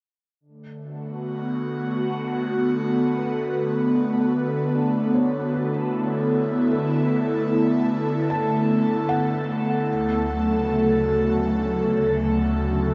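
An airy, breathy pad sits up front, entering at 0.8 seconds with sustained chords that bloom slowly and hang on long releases. Its detuned sawtooth-and-triangle tone is threaded with a gentle noise layer and colored by chorus and phaser. This is a luminous ambient piece in D major at 76 BPM in 3/4, heard as a section cut from a longer work and resting on a D6 chord from 0.4 seconds. From 3.2 seconds a felt-muted upright piano fades in behind the pad, playing arpeggios with a mellow, intimate, vintage character, trailed by a diffuse ambient delay. Both parts share a shimmer reverb, and the recording sits in a huge, wet space with an 8.3-second decay and a rounded top end that gives it a warm glow.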